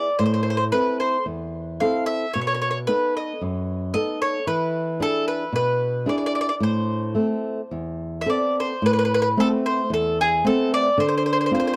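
Dry and close, this recording has the intimate feel of a 1970s studio, with both instruments placed up front. It is a short excerpt of an Italian folk serenade, wistful and romantic, moving with a loose, rubato feel in 4/4. A woody mandolin carries the melody throughout, its picked double strings giving each note a shimmering, doubled quality. Beneath it, a flamenco guitar provides fingerpicked accompaniment on fresh-sounding strings, with audible finger squeaks adding a human, in-the-room detail. The harmony passes from Am through B7 and E7 to a tender Amadd9 at 6.6 seconds, before the phrase begins again at 8.8 seconds and reaches Dm7 near the end. The two warm acoustic tones sit close together, giving the piece a gentle, candlelit charm.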